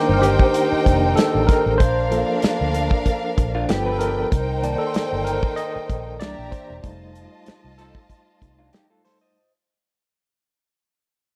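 Lush 1970s-style soul in C dorian at 95 BPM, with a lightly swung sixteenth-note feel in 4/4 and a cinematic, silky mood; it is cut from a longer piece and fades out throughout. An overdriven tine electric piano takes the solo through a combo amp, its bright, barky, gritty tone pulsing with fast tremolo, while a lush, bowed violin section with vibrato and a soft attack carries a second line up front. Underneath, a dry soul drum kit with a tight kick and a medium-tuned snare sits with a dark, round, foam-muted fingered electric bass, and a mellow glockenspiel rings softly in the background during the first part. A lo-fi, slightly broken-up electric guitar plays a brief riff around 3.5 s and returns near the close, and a tight, jazz-style horn section adds a faint, clear stab at 7.8 s within a band accent that begins at 6.8 s. The chords run from Cm7 through Bbmaj9 and G7 back to Cm7, then on to C7 and F7, in light reverb with small room ambience.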